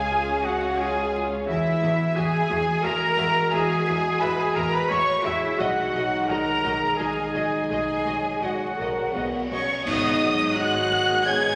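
In a sorrowful, bittersweet cinematic orchestral setting with a rubato three-beat lilt, a lush violin section carries the expressive, vibrato-laden melody over a second violin line, a pure, bright flute group, a solo oboe that drops out at 9.5 seconds, a rich viola section, warm sustained French horn chords, ringing fingerpicked harp arpeggios and a deep bowed cello and double bass foundation, while cymbal swells, clash cymbals and concert bass drum enter softly in the background at 5.6 seconds and a mellow solo clarinet appears at 10.6 seconds, all bathed in reverberant scoring-stage ambience with a vinyl crackle.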